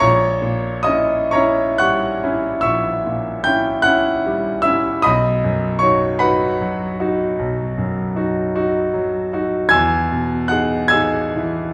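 A clear, up-front concert grand piano opens on an A#dim7 chord, settling onto B major at 5.0 seconds and Emaj7 at 9.7 seconds in this serene, nostalgic Romantic nocturne, cut from a longer piece. The solo piano unfolds in a slow, rubato 12/8 at roughly 40-53 BPM in B major, its smooth, vintage tone anchored by a deep bass. A reverberant recital hall with a 1.4-second decay surrounds the instrument.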